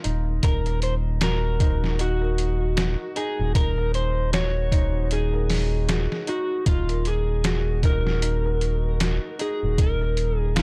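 Trip hop at 77 BPM in Eb dorian, melancholic and brooding, with a 16th-note swing feel and a dry, close sound in this short cut from a longer piece. A muffled, pitched-down sampler-style kit with a thumpy kick and medium-tuned snare sits up front beside a round, deep analog bass holding Eb1, while a soft, felt-muted upright piano plays quiet arpeggios through digital delay, its action noise audible. From 0.4 s an electric slide guitar carries the melody, dark and slightly broken-up, roughened by 12-bit sampler grit and dub echo over an Ebm chord that gives way to Eb5 at 9.8 s.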